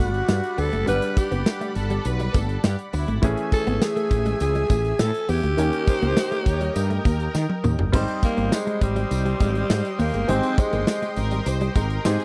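A raspy, gritty alto saxophone carries the melody up front, its vibrato and slapback echo giving this uplifting, romantic 1980s-style pop passage a punchy lead voice until it drops out at 11.2 seconds. Beneath it, a woody, growly fretless electric bass sits prominently, while a modern studio drum kit with bright cymbals, a medium-tuned snare and a tight kick drives a straight 4/4 groove, with a drum fill from 7.3 to 7.9 seconds leading into a repeat of the opening section. A clear baby grand piano and a picked, compressed clean electric guitar riff, treated with ensemble chorus and slapback echo, stay in the background, and a jingly tambourine adds quiet shimmer. A lush, airy synth pad holds sustained chords through a chorus effect, and a dark studio violin section joins at 1.8 seconds with an expressive bowed second line full of vibrato and portamento. The chords move through lush major-seventh and dominant-seventh colours, and the sound is that of a dry, close 1970s-style studio with light reverb, cut from a longer piece.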